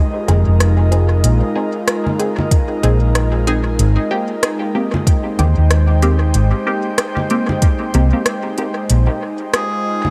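A relaxed 94 BPM groove in 4/4 with a gentle sixteenth-note swing drives this peaceful, hazy ambient dub excerpt, carried by an up-front, round hollow-body electric bass, a tape-tinged electronic kit of congas, crisp hi-hat and rim click soaked in dub echo, and a soft electronic kick that sits in the mix from 2.5 to 7.8 seconds. Above it, a breathy, detuned pad holds chorused chords while muted, filtered dub stabs pluck through phaser and echo, moving from Bb7sus4 to Abmaj7 and back. A reedy, nasal melodica slips in on a single Ab at 9.5 seconds, all set in a light reverb.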